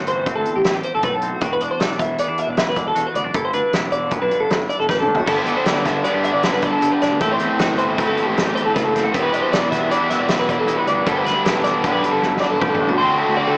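Playful and bright, this math rock and midwest emo excerpt moves at 156 BPM in an odd 5/4 metre with a straight feel, tuned slightly below standard pitch. A clean, twangy twelve-string electric guitar picks arpeggios drenched in lush chorus, while a twangy electric guitar with subtle chorus picks out accompaniment in the background. Beneath them, a dark, round fingered electric bass growls with fuzz and overdrive, and a loose indie drum kit sounds distant and roomy, with a fat snare, punchy kick and rolled-off top. A drum fill at 4.9 seconds ushers in a cranked stack guitar at 5.3 seconds, double-tracked and up front, whose overdriven riff thickens the texture. The chords cycle through Am7, Em9 and G69 before landing on D9 after a final fill, and the whole thing carries the lo-fi character of a cassette home recording played through a small speaker, with light reverb.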